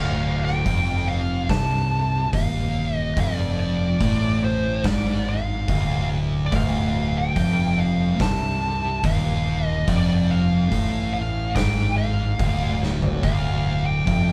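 A slow, straight 4/4 pulse at 72 BPM drives this heavy, brooding stoner and doom metal passage in D phrygian on a D minor chord, where two thick, picked fuzz guitars grind out a low riff in the background alongside a growling, bright overdriven fingered bass, a compressed fuzz lead guitar with wah sings a melody above, and an oversized low-tuned drum kit with a punchy kick and saturated, rolled-off top enters at 0.5 seconds and plays a fill at 12.8 seconds, all captured as a band playing live in one room with light reverb.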